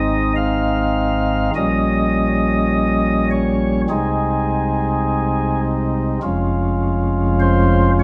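Soft, warm flute stops on a solo pipe organ sit up front in this majestic, reverent classical chorale excerpt in Ab major, moving with rubato at 51 BPM in 4/4 and spanning F1 to F5 with baroque voicing and tremulant, as the harmony passes from Ab through Gdim/Bb and Ab/C to Db/F at 6.2 seconds, all inside the reverb of a stone room.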